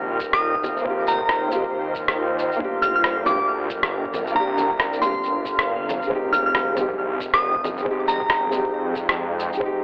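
A dry, gritty recording with a lo-fi, telephone-like sound and light digital reverb frames this wistful, melancholic future garage fragment in F dorian, moving at 137 BPM in 4/4 with a 61% swing on the 16th notes. A felt-muted upright piano plays soft, intimate accompaniment coloured by vintage 12-bit sampler grit and tape echo. An airy, breathy pad holds chorused, phased chords, while a menacing detuned saw bass swells underneath. Both pump with the sidechain, as does the piano. Up front, a muffled, overdriven, sampler-style kit of shaker, rim click and bongos drives the groove over a thumpy kick buried in the background. A crystalline FM bell carries the melody high above with chorus and analog delay, and a very quiet drifting texture of glassy overtones hovers until 6.1 seconds. At that point the harmony settles from Gm7 onto Fm7 and a faint electronic impact sounds, ending at 7.9 seconds.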